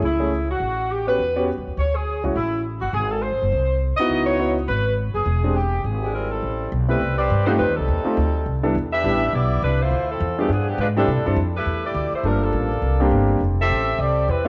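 Big band swing jazz at a brisk 206 BPM in 4/4, with a lively swung eighth-note feel and a swinging, dramatic mood, tuned slightly sharp to A4 = 443 Hz. This excerpt is cut from a longer piece. A dark, vintage-toned saxophone section carries the melody up front, its ensemble sound colored by a light vibrato. Beneath it, a woody pizzicato upright bass with steel strings sits close and present, while a clear, intimate grand piano comps with natural, long-sustaining chords and audible action noise. The opening passage moves through rich, shifting harmony, including rootless and augmented colors, before the music settles into A minor at 6.4 seconds for a second passage that runs to 14.5 seconds. A moderate echo chamber reverb gives the performance a roomy, resonant glow.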